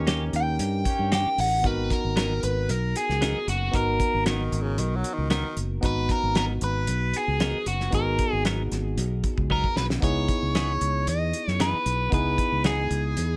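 A straight-eighth soul blues groove at 114 BPM in G# minor, built on a cloth-damped, thuddy drum kit and a round, up-front fingered bass, carries this smoky, soulful excerpt as a biting overdriven guitar with phaser takes the melody over barky tine electric piano and clean semi-hollow guitar stabs with tape echo, while a distant horn section holds chords until 1.3 seconds and a raspy, growling tenor saxophone adds a brief second line from 4.3 to 5.6 seconds, set in a lightly reverberant space.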